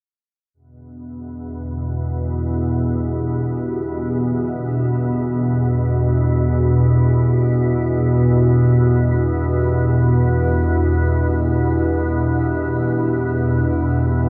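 A low, organ-like drone opens this cavernous, desolate dark ambient fragment at 1.0 seconds. It sits up front, calm and warbling, with a vintage, detuned unison character, a slow attack and a long release, thickened by ensemble chorus and its own built-in reverb. Half a second later a deep, moody analog pad settles in above it with sustained chords, its detuned square, sawtooth and triangle tones backed by a sub octave and coloured by chorus, phaser and shimmer reverb. The pad stays lower in the mix than the drone and fades out across the passage. A huge, wet reverb tail and a dark, warm production give the whole fragment the sense of a vast, empty space before it is cut off at 14.3 seconds.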